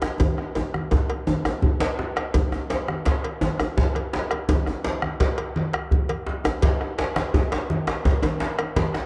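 An echo-heavy mix with moderate spring reverb carries this driving, powerful excerpt of West African traditional drum ensemble music in 12/8 at 112 BPM, where a medium-tuned djembe with metal rattles sits up front beside a second tight, cracking djembe played with soft hands, bright low-tuned congas struck with hard hands, a round bombo and a metallic cowbell in the background, all five parts carrying analog delay, as a drum fill from 0.2 to 2.3 seconds leads into the second section.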